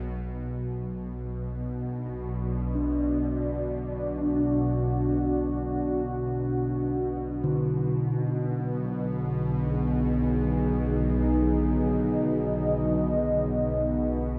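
Ominous and desolate, this dark ambient drone drifts in free time, cut from a longer piece, as a string-like, tense drone with a detuned sawtooth edge and phaser shimmer sounds from the very start, joined at 2.6 s by a deep, moody pad of sustained chords softened by chorus. A ringing quartz singing bowl with slow beating plays meditative arpeggios in the background until 7.8 s, its diffuse delay trailing into the haze. The harmony moves from B minor to G-sharp minor at 7.6 s, and a moderate plate reverb soaks the mix in a dreamy wash.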